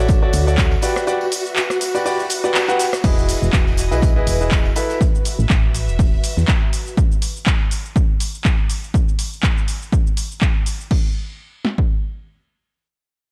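A 122 BPM groove in 4/4 with a 16th-note swing drives this euphoric, feel-good piano house excerpt in E major: a punchy analog drum machine's kick and snare sit up front, a second drum machine layer adds crash, handclaps, hi-hat, rim click and shaker, and a very quiet loose indie kit with a fat snare and a very quiet tambourine lie beneath. A bright, brilliant grand piano riff with long sustain, delay and a low-pass filter pumps from the sidechain alongside a round, punchy FM bass and a lush, bowed string section in the background, over chords moving from Dmaj7 and Gmaj7 to Emaj7, Asus2 and F#7sus4. A break arrives at 1.1 s and the piano stops at 5.0 s, while the drum machine kick and snare carry on to 11.9 s in a dark production with light small-room reverb.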